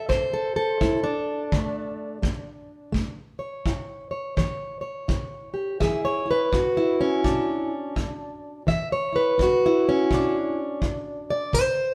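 A relaxed 84 BPM swing in 4/4, with the eighth notes pushed at 61%, gives this short acoustic country blues a soulful, laid-back lope. A fingerpicked, plugged-in steel-string parlour guitar carries the melody from the start to 11.9 seconds, sitting up front with a dark, boxy tone and ranging from B2 to E5. A tight, roomy kick drum, played with brushes, keeps time beneath it from 0.1 to 11.7 seconds. The harmony moves from D5 to A at 3.0 seconds, then settles onto an E7 shape at 5.8 seconds. The duo sounds like it was recorded live in one room, with a moderate stone-room reverb adding a natural sense of space around the playing.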